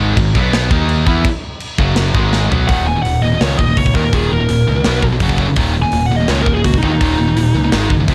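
A dark, high-gain lead guitar solo takes over at 2.7 seconds in this epic, aggressive heavy metal excerpt, cutting across a driving straight 4/4 groove. Two bright, distorted rhythm guitars sit in the background, playing a picked riff through power chords such as B5, Eb5, Gb5 and Ab5. A fuzz-soaked picked electric bass with overdrive stands up front, anchoring the low end. The acoustic drum kit enters at 0.2 seconds with a tight kick, medium-tuned snare, hi-hat, crash and toms, sounding big yet mid-forward, and a drum fill from 2.3 seconds launches the solo. The production is dry and warm, with little reverb.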